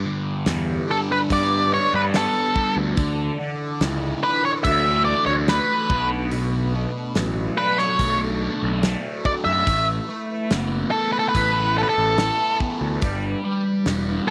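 The recording has a studio-room ambience with audible lossy compression artefacts, and this hazy, trippy psychedelic rock passage is cut from a longer piece. It moves at a straight 72 BPM in 4/4 in G major, passing through G, Dsus2, Bm7 and Asus2 before returning to G at 13.0 seconds. A double-tracked, compressed fuzz guitar plays the riff through distortion and phaser from the first moment. A very quiet, mellow organ-string ensemble holds soft-attack sustained chords with a vintage chorus sheen beneath it. At 0.5 seconds a punchy, overdriven picked bass and a dry, mid-forward 70s kit with a tight kick and medium-tuned snare arrive. From 0.9 seconds a dark octave-fuzz lead guitar sits highest in the mix, carrying the melody through tape echo.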